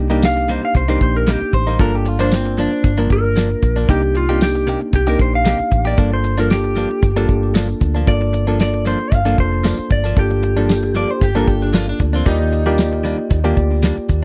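A dry, close 1970s-style studio sound frames this mournful, brooding slice of straight-eighth soul blues in G minor at 115 BPM, where a damped 70s drum kit with a fat snare, tight kick, hi-hat and tambourine sits up front beside a round, foam-muted fingered electric bass. A reedy electric piano and a clean, direct-recorded electric guitar with tape echo on its stabs fill out the accompaniment as the chords move between Cm7 and Gm7 before settling on Ebmaj7 at 12.3 seconds. A dark, slightly broken-up lead guitar through a small old amp carries the melody until 11.7 seconds, and a second lo-fi amp guitar adds a brief line early on and again from 11.0 to 13.8 seconds.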